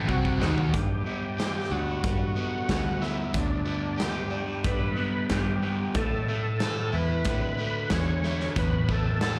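A straight, driving 4/4 at 92 BPM opens with a drum fill on a big rock kit, dark and smooth with a punchy kick, while a bright crunchy overdriven guitar plays its riff only until 0.7 seconds, when the sunny classic rock groove settles on G and later moves to Asus4 at 6.0 seconds. Up front, a hollow-bodied overdriven semi-hollow guitar carries a riff through phaser and slapback echo, over a round, foam-muted picked electric bass and a thick, gritty tonewheel organ melody with chorus vibrato, slow rotary speaker, slapback echo and plate reverb. It sounds like a live club gig heard through the venue's PA, with light reverb, in a short cut from a longer piece.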